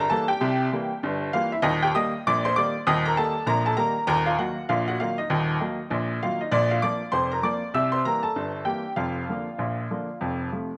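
Ragtime piano at 98 BPM in a jaunty, playful 2/4 with a light swing, this short cut from a longer piece features a solo upright piano, clear, woody and slightly detuned, sitting up front across a span from Eb1 to E6, bathed in a moderate plate reverb as the harmony moves from C7 through Eb, Ebm and Bb before closing on F at 10.2 seconds.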